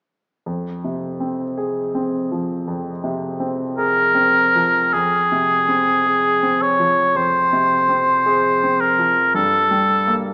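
Romantic classical duo for oboe and grand piano in F minor, unfolding slowly at 54 BPM in 4/4 with a rubato feel and a melancholic, yearning mood. The clear, present grand piano opens the excerpt alone at 0.5 seconds as accompaniment, and the warm oboe enters at 3.8 seconds to carry the solo melody up front with light vibrato in a classical style, louder than the piano. The harmony rests on F minor before turning to a rootless diminished chord near 9.3 seconds, all heard in a moderate recital hall reverb with a small speaker sound.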